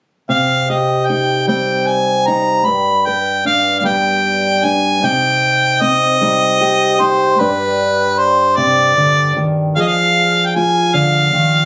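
A haunting, melancholic folk excerpt in C minor, moving in a slow 6/8 at 51 BPM counted in dotted quarters. A clear harmonica carries the melody up front, played with a light vibrato in a classical, soloistic manner across the range from B4 to B5. Beneath it, a fingerpicked steel-string acoustic guitar supplies dark accompaniment from G2 to B4, also placed up front, with both parts sounding together from 0.3 to 11.7 seconds. The harmony alternates between Cm and G, and the second section, beginning at 5.0 seconds, closes on Ddim/F. The recording was captured on a phone in the room, with a light club reverb and compression.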